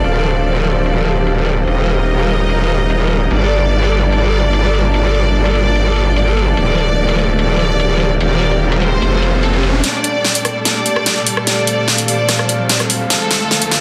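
Heavy and chaotic, this half-time wobble dubstep fragment puts a growling, saturated bass up front until 9.8 s over an electronic drum kit with a huge snare and metallic hats, while a distant symphonic string section holds smooth sustained chords, a deep, dark detuned pad lingers in the background, an expressive bowed violin section carries the melody with dub echo from 3.3 s, and an electronic riser enters at 8.6 s ahead of a drum-fill build-up.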